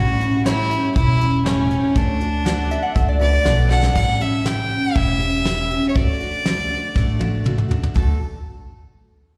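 Honky-tonk and classic country at 120 BPM in D major, down-home and easygoing, this cut from a longer piece is heard as a live gig through the venue's PA, with a clear, earthy bowed fiddle with light vibrato up front carrying the melody over bright, full-bodied picked dreadnought guitar with finger squeak, a woody, thumpy pizzicato upright bass on gut strings, and a soft brush kit with a fat snare and punchy kick, while a jangly vintage tack piano sits in the background from 0.5 to 3.9 seconds, a nasal, metallic lap resonator guitar played with fingerpicks and slide adds a second line from 2.7 seconds, slapback echo colours the fiddle, guitars and piano, and drum fills close each half.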